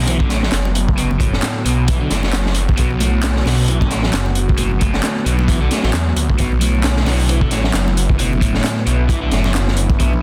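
This breakbeat excerpt has a swaggering, raw attitude, riding a swung groove over a single minor chord. A gritty, up-front acoustic kit enters at 0.1 seconds, its punchy kick and high-tuned snare saturated and dark with a rolled-off top, while a thick, swirling detuned saw bass with a phaser sits equally forward. An overdriven, double-tracked electric guitar plays a bright picked riff through tape echo, and a lush unison pad holds sustained chords in the background with chorus and sidechain pumping. Layered electronic handclaps join at 0.5 seconds, and very quiet, thin-skinned congas sound distant, as if in a large room. The mix carries light small-room reverb and a dense, heavily limited modern master.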